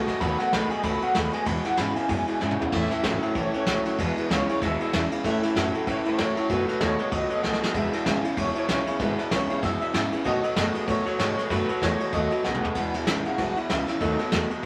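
Rollicking and rowdy, this rockabilly excerpt swings along at 191 BPM in E major, with a twangy, slightly broken-up electric guitar carrying a tremolo-tinged melody (its clean solo opening the first 2.7 seconds) over a second electric guitar riff, a bright fresh-stringed picked acoustic guitar, a thumpy, woody pizzicato upright bass, and a soft brush drum kit with a punchy kick whose fills arrive near 2.4, 7.4 and 12.4 seconds, all set in moderate studio reverb beneath a layer of vinyl crackle.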